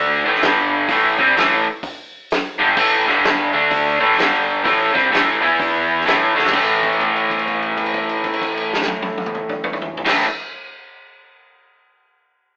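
A swung 4/4 groove at 128 BPM drives this heavy, smoky blues rock and southern rock cut in A minor, taken from a longer piece. A crunchy, double-tracked overdriven guitar sits up front, picking a bright riff built on power chords and A minor shapes. Beneath it, an amped, fingered electric bass with a punchy growl stays low in the background. The vintage acoustic kit enters at 0.3 seconds with a punchy kick, a medium-tuned snare, dark cymbals, hi-hat and toms, its top end rolled off. A drum fill at 6.3 seconds leads into a second section, where a held note rings from 6.5 seconds to 10 seconds. The band plays live in one room with moderate studio reverb, all filtered through a narrow, telephone-like sound.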